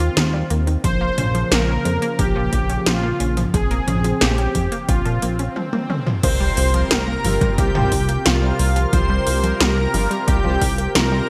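A bright 1980s-style digital production with light reverb frames this cinematic, nostalgic synthwave excerpt in a straight 4/4. A smooth, detuned supersaw carries the melody over a soft-attack, chorused analog pad in the background, while a lush, warbling unison pluck with cassette-tape character and digital delay plays arpeggios. Up front sit a dark, glossy chorused synth bass and 80s electronic drums with metallic hats, a gated snare and gated toms, joined at 0.8 seconds by a punchy, tape-warm electronic kick. A background swell begins at 5.2 seconds, followed by a drum fill at 5.6 seconds and an impact at 6.2 seconds, where an airy, dreamy lead with vibrato and bold, brassy analog synth stabs enter.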